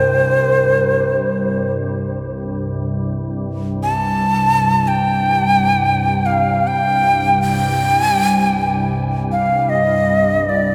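A breathy cedar flute with vibrato and a woody chiff carries a haunting, meditative free-time melody up front over a calm, detuned organ-like drone pad with ensemble chorus, while a glassy, ethereal glass harmonica touch sounds very quietly only until 1.1 s, all set in a vast, echoing cathedral space in this fragment of world meditation music.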